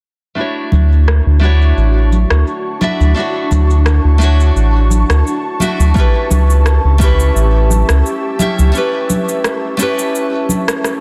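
A relaxed, smooth sunset chillout excerpt in a gently swung 4/4, where fingerpicked nylon-string guitar with delay and an ethereal, airy pad with ensemble chorus and a filter sweep float over a round, up-front analog bass, ringing soft-handed congas and overdriven electronic cabasa and rim click, with a deep overdriven kick entering at 6.0 s as the harmony moves from Dmaj7 to A7, before a break at 8.7 s and a drum fill at 10.8 s.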